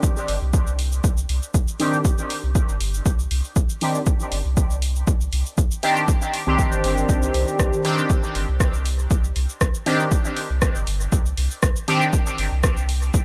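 Dub techno with a hypnotic, deep mood, built on a single C minor add-nine chord in a lightly swung 4/4. A punchy, up-front electronic kick and a deep house kit of dark hi-hats, rim clicks and shaker run from the start, joined at 0.3 seconds by a round, soft sub bass with tube saturation and sidechain pumping. From 1.8 to 12.0 seconds a juicy, detuned sawtooth polysynth plays resonant, filter-swept stabs with ring modulation, chorus, phaser and dub echo, all set in a gritty digital ambience of this short section cut from a longer piece.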